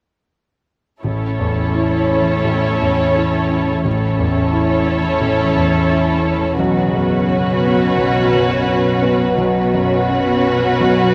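Cinematic, emotional film score for orchestra, uplifting and moving, with a rubato feel in a brief passage cut from a longer piece. A polished grand piano sits up front, its warm, present tone carrying the accompaniment, while lush, bowed violas with vibrato fill the middle and a distant, smooth violin section adds a second line above. A rich cello section holds the bass and a ringing, fingerpicked harp plays arpeggios, both in the background, as the harmony moves from A to Bsus2 at 6.6 seconds within a moderate scoring-stage reverb captured by close, detailed microphones.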